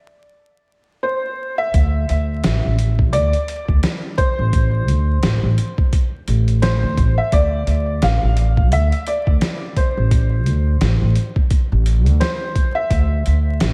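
Smoky and cinematic, this trip hop excerpt opens with a soft, felt-muted upright piano carrying the melody alone through a short break, its mellow, intimate tone trailed by tape echo. At 1.7 seconds a woody, dark pizzicato upright bass and a gritty, compressed sampler-style drum kit enter up front, the thumpy kick, fat snare and hi-hat sounding re-recorded in a large room with a swung feel. Light studio reverb and vinyl crackle give the recording a dusty sheen, and it is cut from a longer piece.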